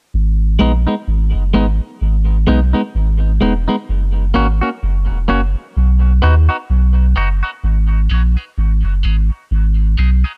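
Dub reggae at a slow 64 BPM in G# minor, this short excerpt from a longer piece sets a deep, hypnotic mood with a swung sixteenth-note feel and tuning a touch above standard pitch. A warm, round sub bass with a sine-like tone sits up front from 0.1 seconds, its notes starting quickly and sustaining low in the register. A clean electric guitar enters at 0.6 seconds as accompaniment, its bright, twangy, picked tone compressed, thinned by a high-pass filter and trailed by dub echo. From 3.9 seconds a filter sweep colours the guitar as the harmony moves from G#m through F# and B before returning to G#m. The sound is dry and close, in the manner of a 1970s studio, with little reverb around the parts.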